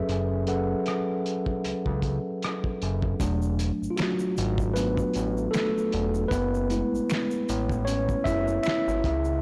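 Sultry and soulful, this short cut from a longer neo-soul R&B piece sits at 77 BPM in F# minor with a sixteenth-note swing, built on a mellow, clean tine electric piano voicing F#m11 and E9sus4 chords over a fat, sawtooth-and-square analog bass with transformer saturation and a moving notch filter. A cloth-damped, muffled, gritty lo-fi drum kit with a tight, soft-clipped kick, fat snare, hi-hat, rim click and finger snaps carries the groove, while a tube shaker, handclaps and snaps enter in the background at 3.2 seconds as the electric piano takes a solo. The whole recording is blown-out and overdriven, with light reverb and small-room ambience.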